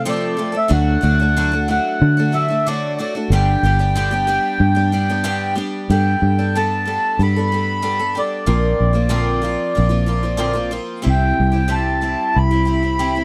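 A mellow, reedy accordion carries the melody up front, its tone boxy and close with a slow beating in the reeds. This is a short cut of folk rock with a heartland rock lean, moving in a straight, unhurried four with a jangly, warm mood. A picked twelve-string acoustic guitar accompanies throughout, its octave-doubled strings giving a shimmering, concert-sized sound. Underneath, a fingered electric bass sits round and dark, its foam-muted notes direct and amped. The harmony moves from F/C through D and G, then shifts at 5.9 seconds into a second passage of Gadd9 and Bbadd9 before landing on C. The dry, close sound places all three players near the listener, like a 1970s studio session.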